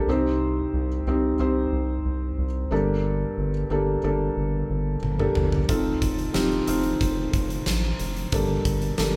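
Driving and dramatic, this short piano-driven pop excerpt moves at 91 BPM in a straight 4/4, set in G minor. A felt-muted upright piano carries the accompaniment from the opening, its soft, intimate tone sitting up front, while a round analog bass enters at 0.1 seconds with a deep, wave-folded voice that blends square and sine character and sustains beneath the chords. The harmony travels from Cm to Gmadd9, then F7, and back to Gmadd9. At 5.0 seconds a huge arena drum kit of toms, hi-hat, kick and snare enters with a fill, its fat snare and punchy kick carrying a hall-like acoustic presence. The band sounds as if playing live together in one room, with light reverb around the parts.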